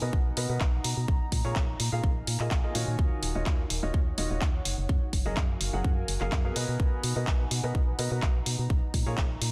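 A punchy electronic kick sits up front in a straight 4/4 at 126 BPM from 0.1 seconds, joined at 0.4 seconds by a house drum kit of handclaps and bright hi-hats, both drum parts carrying studio reverb. This is an energetic yet bittersweet piano house clip cut from a longer piece, its chords moving through Bmaj7, Bb7sus4, Ebm9 and Gbmaj9. A clear, woody upright piano plays the riff, pumping against the kick and shaded by a low-pass filter and tape echo. Underneath, a hollow, organ-like FM bass with a fast attack and dark, decaying notes also pumps with the kick. A warbling, nostalgic pad with a lo-fi, detuned sawtooth-and-triangle tone adds a slow-attack texture in the background, coloured by chorus, phaser and its own reverb. The mix is dense and heavily limited in a modern style.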